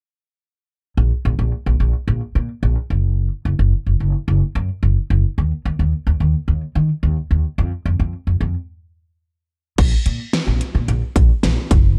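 An upright bass carries this cut from a longer synth-pop piece, entering at 1.0 seconds with a pizzicato, woody tone from its steel strings and ranging from Gb1 to Eb3. It sits up front in a dry sound, setting a cool, driving mood at 109 BPM in a straight 4/4. For most of the passage the bass holds the spotlight alone, until a break arrives at 8.7 seconds. At 9.8 seconds a new section opens with an electronic, layered pop drum kit, placed up front beside the bass. The kit brings a punchy kick, a fat snare, metallic hi-hats and a crash cymbal, giving the closing seconds a polished, produced edge against the acoustic bass.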